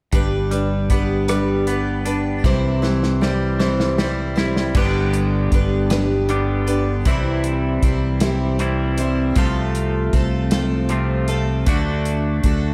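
A picked twelve-string acoustic guitar provides the accompaniment with a bright, shimmering, octave-doubled sound, set up front alongside a twangy, slightly broken-up electric guitar carrying the riff with a subtle chorus. This short cut from a longer piece is hopeful folk rock with a heartland rock feel, moving slowly at 52 BPM in a straight 6/8 in G major. A round, dark fingered electric bass sits up front underneath, while a natural country drum kit with a punchy kick, medium-tuned snare, rim click, hi-hat and crash cymbal adds a smooth, small-room pulse. A drum fill runs from 2.4 to 4.8 seconds, leading into a new section where the chords move from G and C through F/C to D. A moderate plate reverb bathes the mix, giving it a dreamy, soaked quality.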